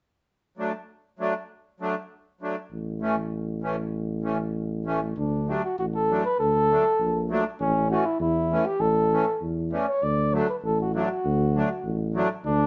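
Bouncy and jolly, this alpine folk dance-band piece moves at 99 BPM in a straight 2/4 in D major, cut from a longer piece. A sweet, reedy accordion with a light tremolo tuning opens the accompaniment at 0.6 seconds, and a roomy tuba enters on the bass at 2.7 seconds. A mellow flugelhorn takes the melody at 5.2 seconds, played up front in a classical style with light vibrato, while the live band shares one room with moderate studio reverb and a soft, dark top end.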